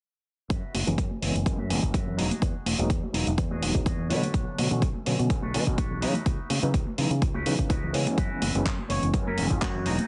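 Filtered disco house at 125 BPM with a light 16th-note swing, sunny and joyful, this short cut from a longer piece runs under a filter sweep from 0.5 to 10.1 seconds, with sidechain pumping on most parts over chords moving from F#7sus4 through Emaj9, Bmadd9 and C#m11. An up-front, punchy layered kick and a gritty, sampler-style kit of handclaps and hi-hat anchor a growly fingered bass, while bright hand-played congas and tube shaker sit in the background, a twangy envelope-filtered guitar riff carries vintage 12-bit grit, and a barky, overdriven tine electric piano adds tremolo and phaser. A mellow trumpet section with light vibrato slips in at 8.9 seconds, all within a dry, heavily compressed radio-style sound.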